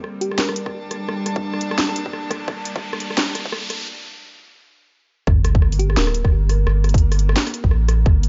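A deep, saturated sine sub bass sits up front in this tense, cinematic half-time drum and bass passage at 172 BPM in G minor, cut from a longer piece and carrying a swung 16th-note feel. Beside it, a tight electronic kick and an overdriven drum kit of cracking snare, rim clicks and bright hi-hats sound layered and close, as if re-recorded in a small room. Behind them, a rich chamber string section holds bowed chords with light vibrato and a smooth top, pumping under sidechain. A round, tine-like FM pluck with chorus and tape echo appears briefly in the background. The opening builds under a filter sweep, with a riser from 2.2 seconds leading into a break, and the drop at 5.3 seconds brings the sub bass back in along with an electronic sub drop, all in a dry mix with its top end rolled off.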